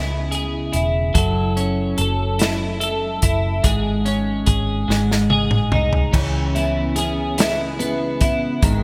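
A six-eight pop ballad in C# minor at a slow 48 beats per minute, this short passage from a longer piece feels dramatic and aching. A bright, twangy twelve-string electric guitar, clean, compressed and double-tracked, carries the accompaniment up front, while a dark, foam-muted fingered electric bass with a round, punchy tone anchors the low end. A polished, airy country drum kit enters at 0.3 seconds with a punchy kick, a medium-tuned snare, hi-hat, crash and toms, and a drum fill from 4.9 seconds leads into the next section. At 6.1 seconds a full-bodied jumbo steel-string acoustic guitar joins with picked arpeggios treated with ensemble chorus. The harmony moves from C#m7 through F#m7 and C#5/G# to G# before returning to C#m7, all set in a moderate plate reverb with a bright 1980s-style digital production.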